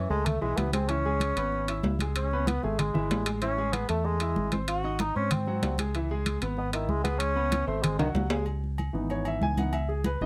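Sophisticated and sultry, this brief cut from a longer Afro-Cuban jazz piece moves in a brisk, straight 4/4. A warm bassoon carries the melody as the solo voice, up front with a light vibrato and a classical style, its tone roomy and slightly distant, until it stops at 8.1 seconds. Beneath it, a concert grand piano supplies intimate accompaniment with deep bass, long sustain and audible action noise. A fingered electric bass sits up front with a dark, round and punchy sound. Bright, damped congas struck with hard hands join ringing timbales and agogo bells, and a drum fill at 8.0 seconds hands off to a piano solo from 8.5 seconds. The close, detailed recording has little reverb, giving the ensemble a natural, present sound over minor-key seventh chords.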